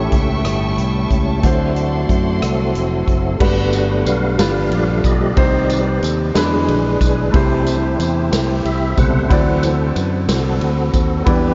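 Soaked in a huge, dreamy reverb with its top end rolled off, this slow, hopeful gospel passage in 6/8 at 61 BPM is cut from a longer piece and moves through chords from A7 and D7 to Gmaj7, Cm and a closing D9. An up-front tonewheel organ with key click, chorus vibrato and a slow rotary speaker takes the lead over a clear grand piano with audible action noise and long sustain, a round, punchy fingered electric bass, and a swinging big-band drum kit with a punchy kick, medium-tuned snare, hi-hat, ride, rim click and crash. Lush bowed strings hold sustained chords until 3.4 s, and a jingly tambourine sits in the background from 3.7 s, adding to the reverent mood.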